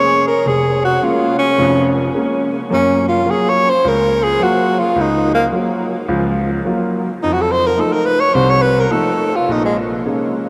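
A swung 4/4 at 106 BPM carries this moody, late-night jazz fragment in Bb minor, cut from a longer piece and moving from Bbm7 through Gbmaj7 and F7 before settling back on Bbm7. Up front, a breathy tenor saxophone takes the solo melody with a soft attack, vibrato and a whispered, intimate tone, stopping at 9.8 seconds. Beside it, a warm, natural baby grand piano provides the accompaniment until 10.4 seconds, all heard in a vast, echoing space with a huge, lingering reverb.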